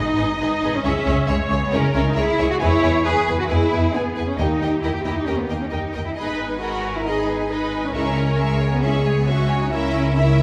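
Determined and swashbuckling, this short cut from a longer heroic adventure film score moves at 135 BPM in a straight 4/4 in G# minor, its harmony turning from G#m through C#m, E and D# before closing on A#dim/C#. A smooth, vibrato-laden violin section carries the melody from the background, while a second, clearer and more intense violin section adds a distant supporting line beneath it. A focused viola section fills in the accompaniment, and a very quiet French horn section holds sustained chords in a classical style until 9.9 s. The low end sits up front, with an expressive, soft-attack cello section and a rich, even double bass section bowing the bass line together. A single round timpani note on calf heads, struck with soft mallets, sounds briefly at 4.4 s, and the whole ensemble is set in a wet recital hall reverb that suggests a church or concert hall.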